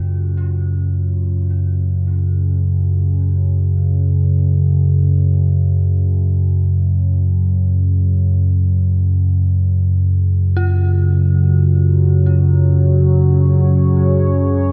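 Ominous and unsettling, this dark ambient drone drifts in free time, cut from a longer piece. A deep, rumbling drone sits up front from the start, its detuned sawtooth and triangle tones warbling with a vintage character, low between F#2 and C#3. Far beneath it in the mix, an eerie, inharmonic FM synth bell plays arpeggios around E#4, its decaying strikes blurred by chorus and tape echo. At 11.2 seconds a moody, mellow pad enters with sustained chords, its unison sawtooth and sub-octave sine layers softened by chorus. The harmony moves to C#sus4 over F# at 10.0 seconds, and a cathedral reverb with a 5.5-second tail leaves the whole recording cavernous and wet.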